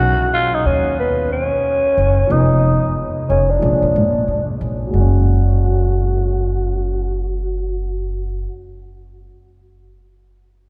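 Drenched in a long cathedral reverb and captured in a church or concert hall, this brief warm jazz-hop cut grooves at 91 BPM in F# major with a swung sixteenth feel, and a filter sweep colours its first 4.9 seconds. A breathy, gritty tenor saxophone carries the melody up front with vibrato and scooped notes, while a worn, slightly detuned upright piano accompanies; both are softened by a low-pass filter. A woody pizzicato upright bass sits forward beneath them as the chords move from a rootless B6 through Fm7b5 and A#7, arriving on F# at 4.9 seconds.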